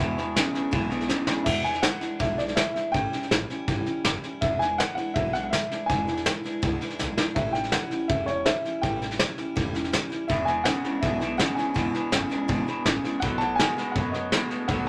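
Rockabilly in E mixolydian at 163 BPM, this upbeat, retro excerpt has a dark, mellow upright piano carrying the melody over bright, full-bodied picked acoustic guitar and a woody pizzicato upright bass sitting in the background, moving through E7, A7 and B7. An up-front vintage kit played with brushes, with dark cymbals and a punchy kick, drives the 4/4 groove and adds fills near 1.1 and 7.0 seconds. A twangy, slightly broken-up electric guitar riff through a small old amp sounds at the start until 1.4 seconds and returns at 10.3 seconds, all set in a modest small-room reverb.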